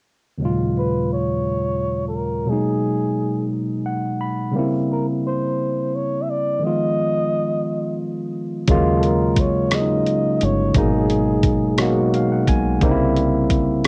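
A barky, clean tine electric piano through a combo amp opens this sultry, late-night slow six-eight R&B excerpt in Eb minor at 58 BPM, soon joined by a breathy, close-miked flugelhorn playing a mellow jazz-style solo with vibrato and scooped notes, both carrying a cassette-tape tint over chords such as Ebm11, Abm9 and C7b9, until at 8.7 seconds a round, punchy, foam-muted dub bass and a gritty, compressed sampler-style drum kit with a thumpy kick, hi-hat and rim click arrive in a light reverb.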